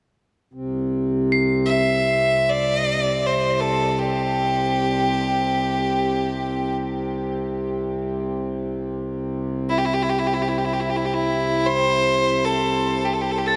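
World meditative music in free time and C major pentatonic, spacious and calm, where a reedy, breathing pedal harmonium drone sits up front from 0.5 seconds, airy crotales struck with plastic mallets shimmer high in the background from 1.3 seconds, and a single close, bowed fiddle carries a smooth, even melody with light vibrato from 1.7 seconds, all bathed in a huge, wet ambient reverb in this fragment of a longer piece.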